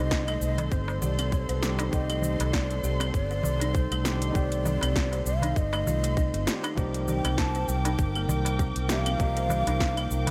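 A light, small-room ambience frames this earthy organic downtempo excerpt at 99 BPM in C dorian with a sixteenth-note swing, where a breathy, hollow ney with vibrato and delay carries the melody over a felt-muted upright piano, dark sul tasto strings and a round, up-front fretless bass that both pump with the sidechain, a buzzing, woody kalimba playing delayed arpeggios, a punchy overdriven deep house kit with metallic hats, cabasa and claves, a tight electronic kick, a crisp darbuka in the background, and a very quiet quartz singing bowl that enters at 6.8 seconds as the harmony moves from Cm69 to Ebmaj7.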